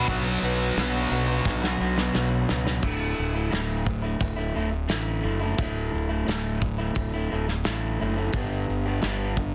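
Anthemic and cathartic, this short excerpt of quiet-loud alternative rock in D major moves at 87 BPM in a straight 4/4, opening on Bm with a biting, double-tracked overdriven guitar riff that drops out at 2.8 s, just after a drum fill that begins at 1.5 s. A growly fuzz bass and a slightly broken-up, lo-fi guitar picking arpeggios through a small old amp carry on as the harmony shifts to Dsus2 and then to G at 8.3 s. A loose indie drum kit with dark cymbals, a punchy kick and a medium-tuned snare sits up front in a small room, all pressed into a dense, heavily limited modern master.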